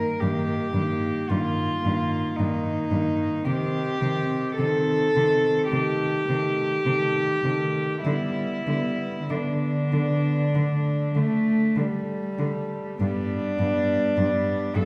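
Three bowed cellos open together in a tender, lyrical classical passage for cello ensemble, drifting in free rubato at a slow 47-56 BPM in 4/4. The top cello carries the melody, its rich, pure tone floating gently forward, while a dark second cello sings a closer, more intimate line beneath it with vibrato and a smooth top. A third cello, warm and floating, fills in the accompaniment in the middle register, and a fourth rich cello enters at 0.2 s to hold down the bass. Every player bows sul tasto with a soft attack, so the sound stays hushed and veiled as the harmony moves from Eb/G through Cm and G/D to settle on G. A reverberant recital hall, heard from further back in the room, wraps the ensemble in a long, glowing tail, and the passage is cut from a longer piece.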